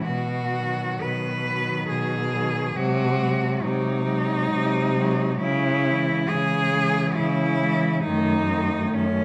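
Solemn and elegiac, this lyrical classical excerpt for cello ensemble unfolds in a flexible, rubato triple metre. A single bowed cello carries the melody up front with vibrato, portamento and an expressive, slightly distant glow, while a second cello traces a smooth, even inner line in the background. A third cello adds rich, distant accompaniment beneath it, also smooth and even. The bass cello, entering at 0.1 s, sits up front with a soft attack, sliding portamento and expressive vibrato. The harmony moves from B through G#7/B# and C#m to D#dim/F#, and the whole ensemble rings in a moderate recital hall reverb.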